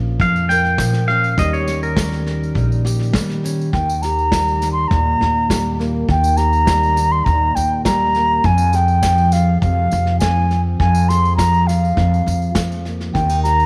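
Intimate and wistful, this short cut from a longer acoustic folk piece moves at 102 BPM in a straight 4/4, tuned slightly below standard pitch. A fingerpicked steel-string acoustic guitar with a dark, full-bodied dreadnought tone and a woody pizzicato upright bass carry the accompaniment throughout, while a soft brush kit with a tight kick and rolled-off top sits quietly beneath, joined by a faint, jingly tambourine. In the opening seconds a bright, clean pedal steel guitar takes the lead up front, played with fingerpicks, slide and volume swells, over a Bbm to Eb7 change before it stops at 2.7 seconds. At 3.7 seconds a wooden flute enters as the melody, pure-toned with vibrato, a crisp attack and lifted highs, set forward in the mix as the harmony shifts to Eb, then Fm and Fmadd11. Light, small-room reverb keeps the whole performance close and unforced.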